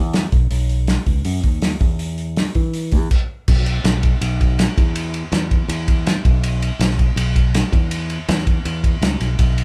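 Upbeat and jangly, this short indie rock excerpt moves at a brisk 162 BPM in a straight 4/4, cut from a longer piece. A modern fingered electric bass carries the low end from the first moment, its bright, punchy tone heard direct and up front as it ranges from B1 to E3. The drum kit joins at 0.1 seconds, a cloth-damped, thuddy acoustic set with a tight kick, a medium-tuned snare, hi-hat, and dark crash and ride cymbals, its rolled-off top giving it a mellow weight in a small room. The band sounds as if playing live together in one space, with light reverb around them and the drums sitting a little louder than the bass. The music shifts into a new section at 3.5 seconds and carries on until the cut at 9.6 seconds, with the tuning set slightly low at A4 = 436 Hz.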